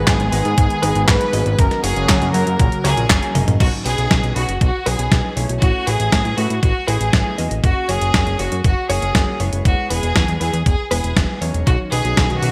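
Italo disco with a playful, sunny mood, this excerpt sets a biting, earthy chamber violin section carrying the melody with delay over a fat, saturated analog bass, picked stabs from a clean, compressed direct-recorded electric guitar, a thumpy electronic kick and an up-front detuned 8-bit drum machine with handclaps, toms and gated reverb. A drum fill arrives at 3.4 seconds, while a smooth, detuned analog pad holds chords in the background until 3.6 seconds and returns at 11.7 seconds, all within a bright 1980s-style digital production.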